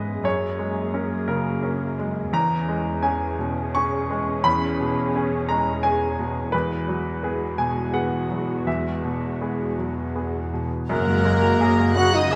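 Wet scoring-stage reverb wraps this moving, sorrowful passage of cinematic film score, cut from a longer piece and flowing in a rubato triple metre. A bright, brilliant baby grand piano sits up front, carrying the accompaniment from the start over harmonies that shift from F#add9 through C#m7/E to Eadd9. Beneath it, a dark, woody viola section with lush vibrato sits in the background, while a cello section, played sul tasto with a soft, floating tone, holds the low bass. At 10.9 seconds the harmony returns to F#add9 and the orchestra blooms. A pure, close violin section takes the melody high above, joined by a second violin line, an airy metal flute, a distant, roomy clarinet and a solo oboe with light vibrato. A mellow, tight French horn section sustains chords, and a double bass section anchors a single low F#1 until the passage is cut off at 12.4 seconds.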